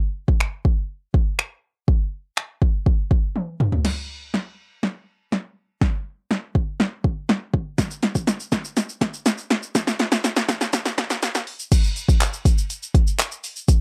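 Confident yet bittersweet, this pop excerpt moves at 122 BPM in a straight 4/4, carried by an electronic, layered deep house drum kit with a deep kick, punchy snare, hi-hat, handclaps, finger snaps, toms and crash cymbal, all overdriven and placed up front. A long drum fill and build-up begin at 3.8 seconds, a grainy, mellow tube shaker joins at 7.8 seconds, and the drop lands at 11.7 seconds. The sound is dry and close, like a 1970s-style studio recording with a high-pass filter and very little reverb.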